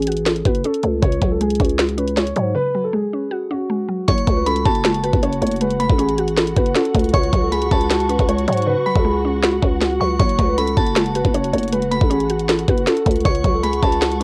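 Lo-fi cassette grain and light reverb color this melancholic, eerie trap excerpt, which moves at 157 BPM in a half-time feel in F# minor. A dark, boxy concert grand piano carries the melody through a low-pass filter over a woody, round mallet-like synth pluck that adds chorus and its own tape softening, while the chords shift between F#madd9 and C#sus4. Underneath, a growling, buzzy 808-style bass and an up-front trap kit with a knocking kick, sharp snare and bright hats drive the groove, with a break from 2.6 to 4.1 seconds. At 4.1 seconds a crystalline FM bell enters high above, shimmering with chorus, phaser and analog delay, and a muted, con sordino string section sits lushly in the background with vibrato. The hi-hats drop out between 8.7 and 10.2 seconds before the pattern returns to the end of the cut.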